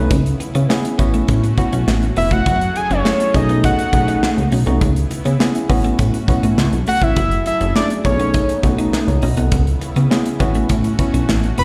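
From the start a worn, slightly out-of-tune tine electric piano with slapback echo, a thick, detuned unison pad through chorus and phaser, a dark, compressed clean electric guitar riff and a plucky, ring-modulated analog bass set a danceable early-eighties boogie funk groove at 102 BPM over C#m7, A69, F#m9 and B13, joined at once by a polished studio drum kit with a punchy kick and handclaps, before a fat, mellow analog lead with vibrato and slapback echo takes the melody at 2.2 seconds, all heard live through a venue's PA with light recital-hall reverb.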